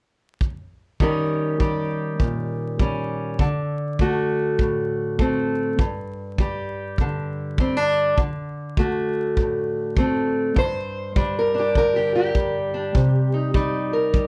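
A fingerpicked steel-string parlour guitar, boxy and up front, carries the melody from 1.0 s in this mournful, soulful acoustic country blues excerpt, moving from Eb7 and D7 toward G minor at 10.6 s before closing on Cm7. A punchy, natural kick drum played with brushes enters at 0.4 s and keeps a swung 4/4 pulse at 100 BPM. The production is dark, with a small-room reverb and a layer of vinyl crackle.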